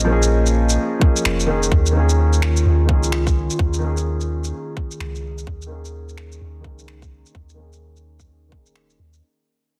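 Melancholic and ghostly, this future garage excerpt at 128 BPM with a swung 16th feel sets a woody upright piano, filtered and tape-echoed under a constant filter sweep, over a warbling, detuned lo-fi pad with chorus and a soft, round 808-style bass, all pumping against the sidechain, while overdriven electronic shaker and finger snaps enter at 0.2 seconds and a tight, up-front kick joins at 1.0 seconds, moving from Bbm7 to Eb7sus4 through a heavily compressed, radio-like sound that fades throughout.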